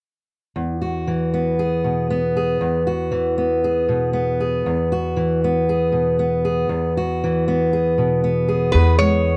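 A fingerpicked steel-string acoustic guitar opens at 0.6 s, sitting up front and resting on an E chord in a gentle, peaceful folk setting at 117 BPM in 4/4 with a straight feel. The key is E major, tuned to A4 = 441 Hz, and the guitar's concert-style tone is warm as it carries the accompaniment alone for most of this short passage. At 8.7 s an upright bass joins on a low E, plucked pizzicato on gut strings with a woody, thumpy sound. At the same moment a metal-body resonator slide guitar comes in up front with the melody, played with fingerpicks, its slide tone bright, metallic and nasal. The production is dark and warm, with little reverb, giving the acoustic instruments an unadorned presence.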